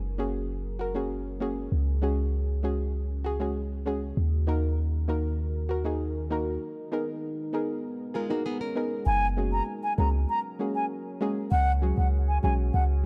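A dry, gritty hardware recording with transformer saturation and studio reverb carries this sultry, hypnotic dancehall excerpt at 98 BPM, where a boomy, clean 808-style bass and a soft, round, detuned pluck with chorus sit up front over a warbling, vintage ambient pad of sustained chords, a fingerpicked nylon-string guitar slips in brief arpeggios at 8.1 seconds during the break, and a hollow, airy wooden flute with vibrato and analog delay takes the melody from 9.1 seconds.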